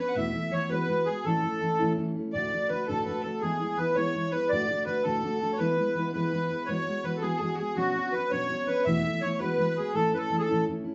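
A reedy, sweet accordion with light tremolo tuning carries the melody up front in this cheerful, rollicking Celtic jig at 110 BPM in 6/8, joined by a clear, earthy bowed fiddle on a second line and a dark, full-bodied fingerpicked steel-string acoustic guitar with audible finger squeak, all heard from further back in a reverberant studio room as chords move from Esus4 through A, D, E and Bmadd9 before the guitar finishes alone at 10.9 seconds in this short cut from a longer piece.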